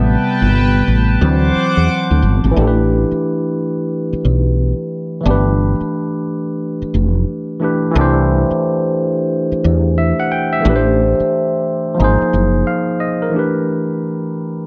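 Swung sixteenths in a relaxed 4/4 give this smooth R&B fragment, cut from a longer piece, its easy sway. A barky, bright tine electric piano through a phaser carries the chords from Am9 to D7 and takes a solo in the opening seconds, while a shimmering, retro pulse-width pad with chorus sustains above it until 2.5 seconds. Underneath, a woody, growly fretless electric bass with ensemble chorus sits up front until 12.6 seconds, and light reverb rounds out the sound.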